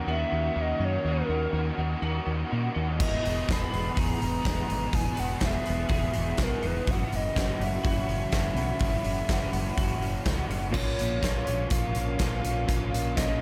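Opening on a warbling, lo-fi pad holding sustained chords in the background, this dreamy shoegaze and dream pop excerpt moves at 124 BPM in a straight 4/4, with a very quiet, twangy twelve-string electric guitar picking bright arpeggios and a scooped, direct-recorded clean guitar playing a riff treated with reverse reverb. A raw, overdriven garage guitar plays its own riff with ensemble chorus, while a reedy, woody FM lead carries the melody from 0.1 seconds, its vibrato and tape echo giving it a blissful shimmer. A round, punchy fingered bass anchors the low end, and at 3.0 seconds a huge arena drum kit arrives up front with a punchy kick, medium-tuned snare, hi-hat and crash cymbal in a big, natural room. The harmony drifts from D#m7 through Emaj7 and F#7sus4 before settling on A#m at 10.7 seconds as a new section begins. Light reverb and studio ambience wrap the layers in a nostalgic haze.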